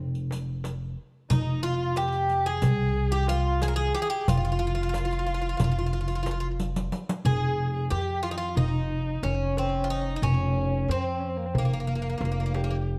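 Heard through close, detailed microphones with light reverb, this excerpt from a longer Turkish makam ensemble piece has a soulful, hypnotic mood in a straight 9/8 metre. A pizzicato upright bass on steel strings, acoustic and up front, starts at 0.0 s, and is joined almost at once by a close riq with dark jingles, and then by a clay-shelled darbuka of natural skin played with soft hands in the background. At 1.3 s a Greek bouzouki takes the melody, its picked double strings warm yet metallic, with some octave-doubled strings, placed up front and touched by slapback echo. Alongside it a single bowed violin carries a second line, woody with vibrato and a smooth top. A drum fill closes the opening section at 7.2 s, where the riq stops and the bass, darbuka, bouzouki and violin carry the next section to the end.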